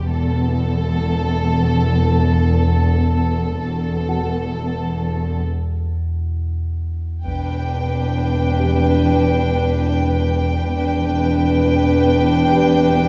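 Mysterious and tense, this cinematic suspense cue, cut from a longer piece, settles over a single Am/E harmony in a straight, unhurried pulse. A symphonic violin section carries the melody with a soft-attacked, floating sul tasto tone, while a woody, vibrato-tinged cello section and a pure, background double bass section hold the low end, also bowed sul tasto. Beneath them a deep, nasal, rumbling drone sustains on its own built-in reverb, and a mellow concert grand piano adds a dark, natural texture in the background. At 7.3 seconds an intimate chamber violin section steps up front with a second line, its light vibrato giving a warm glow, and a taiko ensemble strikes with heavy sticks in a small room until 9.0 seconds. A moderate scoring stage reverb wraps the ensemble in a spacious yet close presence.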